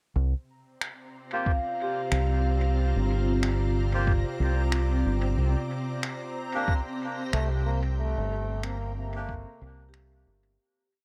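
A soft, muffled, thumpy kick and sparse finger snaps trailing dub echo set a lazily swung groove, while a dark, round, punchy fingered electric bass plays an up-front dub line beneath them in this hazy, spacious ambient dub piece. A pure, detuned organ-like pad drifts through slowly shifting chords with chorus and reverb, joined by a reversed, granular texture holding a high note. Mellow soft-mallet vibraphone loops drift against each other through tape echo, and reedy, nasal melodica stabs move one chord shape in parallel through a filtered echo, before a clear, distant trombone calls out a brief motif from 7.3 seconds as the piece fades out.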